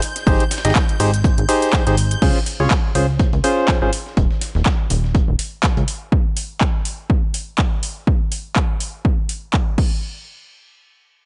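Piano house at 123 BPM with a joyful, uplifting swing: an overdriven, punchy electronic kick runs up front from 0.3 s under a garage kit of metallic hats, handclaps, shaker and crash. A gritty, dusty soul sampler-style kit sits in the background, as do shimmering, vintage string-machine violins pumping sustained chords until 2.2 s. Meanwhile a hollow, ring-modulated organ stab riff with tape echo and a funky, wave-folded analog bass pump through Abmaj7 and Dbmaj7 before the harmony drops out at 3.9 s.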